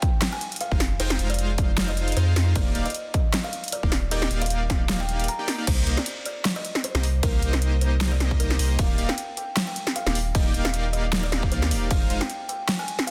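Bright and lush, this future bass excerpt moves at 154 BPM in a half-time feel with a light swing on the sixteenths, set in Eb major. A woody, hollow kalimba carries the melody from the start, its ringing thumbnail plucks breathing with sidechain pumping and trailing tape echo. At 0.7 seconds a fat, detuned sawtooth polysynth joins with a chorused, cassette-tinged riff, while a deep, saturated triangle sub bass also pumps underneath. Up front, a punchy electronic kick re-recorded in a large room drives the beat alongside an overdriven dance kit with a huge snare, crash and hi-hat, and the kick drops out briefly at 5.3 seconds. The chords move through Fm7, Ebmaj9 and Cm7 within digital ambience and a dense, heavily limited modern master.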